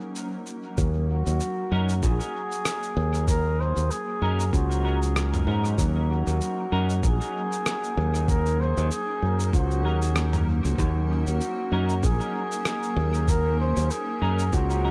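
Spacious and deep, this ambient dub piece is cut from a longer work and rests on a single Ebm7 harmony in 4/4 with a gently swung sixteenth feel. A blurred, evolving granular cloud pad sustains chords in the background from the opening, joined almost at once by a lo-fi sampler-style kit of rim click, shaker and toms, pitched down, muffled and overdriven, with dub echo trailing its hits. At 0.8 seconds a growly, bright fingered electric bass arrives up front alongside a thumpy, compressed electronic kick that carries its own overdrive and was re-recorded in a small room. A veiled, distant trumpet with a bucket mute carries the solo melody in a classical style from 1.1 seconds, its phrases repeated by dub echo. From 1.7 seconds a dark, clean semi-hollow guitar adds stabs shaded by analog chorus, a low-pass filter and more dub echo, all set in light reverb.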